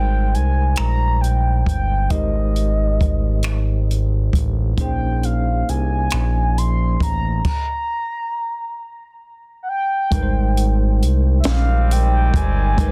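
A smooth, gliding sawtooth synth bass with portamento sits up front in this slow, yearning late-night six-eight R&B fragment at 45 BPM, beneath a round, horn-like synth lead with chorus and vibrato, a clean tine electric piano moving between Abmaj9 and Bbm11, and a compact, dark cocktail drum kit of punchy kick, high-tuned snare, hi-hat, finger snaps and crash that enters at 0.3 s, with a stop at 7.4 s before a clear, vintage horn section adds stabs at 11.5 s, all in a dry, dense, heavily limited mix.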